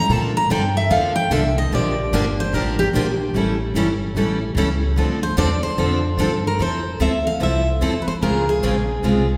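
Swinging and fiery, this short cut from a longer jazz manouche piece moves at 148 BPM in D minor, with a jumbo steel-string acoustic guitar taking the melody in a solo through the first 6.6 seconds, its fresh strings full-bodied and marked by finger squeak. Two picked steel-string guitars handle accompaniment, one up front and one in the background, while a pizzicato upright bass adds a woody, thumpy low end. The whole group sits in a wet recital-hall reverb, moving through chords such as Bbmaj7, A7 and Dm7 before shifting to Fmaj7 and Dbmaj7 in the closing passage.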